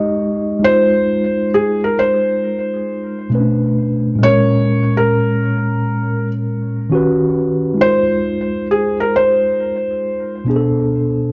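Swung sixteenths at a slow 67 BPM in 4/4 give this short hip hop excerpt a relaxed, cosy, nostalgic sway, with the tuning set slightly low at A4 = 438 Hz. A felt-muted upright piano carries the melody from the start, sitting up front with a soft, intimate, thin-felt tone, dressed in plate reverb and analog delay before it stops at 10.5 seconds. Beneath it, a mellow tine electric piano supplies the accompaniment across a broad range from Bb2 to Eb5, its clean sound heard as if through built-in speakers and coloured by cassette tape and plate reverb; it carries on until 11.3 seconds. The harmony moves from Ab6 through Bm7 and Bbm7 to an Eb7alt before returning to Ab6 and touching Bm7 again. The room has a moderate studio reverb, and the top end is rolled off at 7.8 kHz, giving the whole a dusky, gentle sheen.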